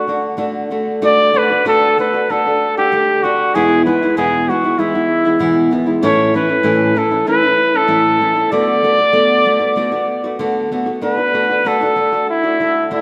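A wet scoring-stage reverb with a 1.5-second decay surrounds this short festive and romantic mariachi passage, cut from a longer piece, while both instruments sit up front. A warm, vintage-toned trumpet carries the melody in a classical style, singing solo with a light vibrato between E4 and D5. Beneath it, a bright nylon-string guitar provides fingerpicked, classical accompaniment from low E2 up to F#4. The music moves at a straight 96 BPM in 4/4, in D major, with the harmony travelling from D through E and A to a D6 chord before settling on D again at 11.0 seconds. Both parts play together from start to finish, and the opening theme returns briefly at the close.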